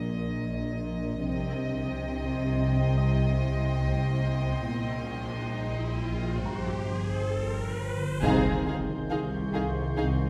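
Mysterious and tense, this cinematic suspense cue from a longer piece opens on a hushed string bed: soft-attack violins carry the melody over intimate cellos and background double basses, all bowed sul tasto, while a detuned, granular swarming drone and a very quiet felt-muted upright piano add unease. A floating, pure high violin texture enters at 1.3 seconds, and an electronic riser and impact begins at 3.5 seconds. At 8.2 seconds the music settles onto an F minor seventh chord over C as a rich second violin line, background violas, a mellow French horn section with a smooth top and a small-room taiko ensemble with heavy sticks all join under a moderate scoring-stage reverb.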